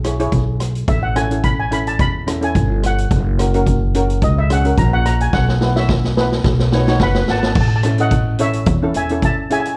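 This carefree, bouncy calypso excerpt opens with a mellow, airy double-seconds steel pan struck with soft rubber sticks, a woody, thumpy pizzicato upright bass on gut strings, and an up-front street-band drum kit with a boomy kick, medium-tuned snare, rim clicks, hi-hat and dark crash cymbals. At 0.9 seconds a second double-seconds steel pan takes the melody, its hard rubber sticks bringing out a metallic shimmer in a boxy small-room sound, and the steel pan stays featured through the first section. The tune moves at 108 BPM in 4/4 with a gentle sixteenth-note swing, passing through E, A, F#, Bsus4 and B chords before settling on A in the closing section. A drum fill begins at 5.3 seconds, and at 6.7 seconds a bright jazz-style horn section with light vibrato adds a brief second line in the background. The dark production has light reverb, and the drums have a rolled-off top, giving the whole a warm feel.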